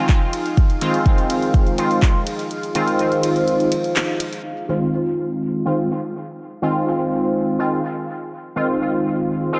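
An echo-heavy mix sits in a moderate echo chamber with a digital ambience, giving this hazy, cavernous dub techno passage in F minor a deep space at 124 BPM in a straight 4/4. Up front, a juicy, detuned sawtooth polysynth fires resonant stabs through a filter sweep, coloured by chorus, phaser, sidechain pumping and trailing dub echo. Behind it, a moody, full-bodied pad holds sustained Fm7 chords with slow attack and long release, its own chorus, built-in reverb and sidechain pumping blurring it into the background. A layered deep house kit of handclaps, hi-hat and ride cymbal ticks along under low-pass filtering that dulls the hats, cymbals, snare and room. A deep electronic kick sits up front from 0.1 s until it stops at 2.1 s, and the band lands an accent at 4.0 s just before the passage moves into a new section at 4.4 s.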